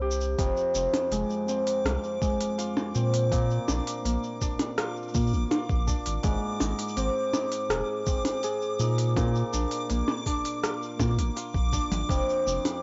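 Folktronica with an intimate, delicate mood, this short cut from a longer piece is built around a mellow, fingerpicked Celtic harp playing ringing arpeggios up front, colored by cassette tape and an analog delay. Beneath it, a round sine sub bass with tube saturation holds sustained, deep notes, while a compressed, pitched-down electronic kick adds a muffled thump. A minimal electronic click kit of clicky hi-hats, rim clicks, shakers and percussion blips sits up front, and both drum parts sound re-recorded in a small room. From 1.3 seconds a reversed, detuned, granular texture with its own reverb drifts in high above as a dreamy, bright swell. The harmony moves from F minor through B-flat and A-flat before settling on an open F, and the home cassette recording rolls off everything above 7.8 kHz, lending the whole a soft, lo-fi haze within a light digital ambience.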